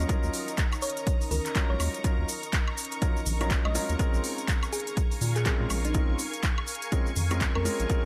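A punchy, overdriven electronic kick drives this late-night, moody deep house excerpt at 123 BPM in Eb minor, where a round analog bass and a felt-muted upright piano's intimate, action-noisy stabs with delay pump under sidechain alongside a silky string machine and a sul tasto violin section, while a tine-like, 12-bit-gritty thumb-piano synth pluck carries the melody from 0.8 seconds over handclaps, smooth hi-hat and woodblock, a grainy tube shaker, faint congas entering at 1.3 seconds, and a barely audible detuned ambient pad, all moving from Ebm7 to Bbm7 in light reverb.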